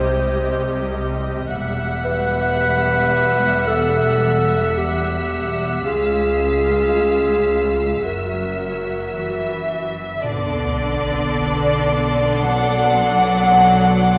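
Mysterious and eerie, this slow cinematic excerpt at 55 BPM sets a lush bowed violin section carrying the melody against a mellow solo clarinet second line, with an expressive viola section, a distant, background cello section and a close double bass section below, while a high, soft-attack violin layer adds texture. The clarinet drops out at 9.7 s, and at 10.2 s the harmony settles into B phrygian on a Bm7 as a huge, dark sub drop lands in the background and another rich violin section adds a second line. Everything sits in the wet scoring-stage reverb, its 2.0-second tail lending the strings a hall-like bloom.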